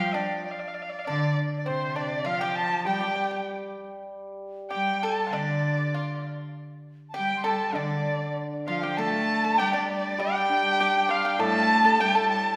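Rubato phrasing loosely shapes a 2/4 pulse at 99 BPM in this graceful, wistful Chinese traditional chamber piece in D yu mode, cut from a longer work. A dark, woody erhu leads up front with vibrato and portamento, while a clear, nasal, earthy cello, a very quiet bamboo dizi with a buzzing membrane, and a bright, dry, percussive fingerpicked pipa each carry second lines throughout. A shimmering, ringing hammered dulcimer adds accompaniment from 2.8 s and returns at 7.7 s, carrying into a new section at 9.0 s, all set in the wet reverb of a church or concert hall.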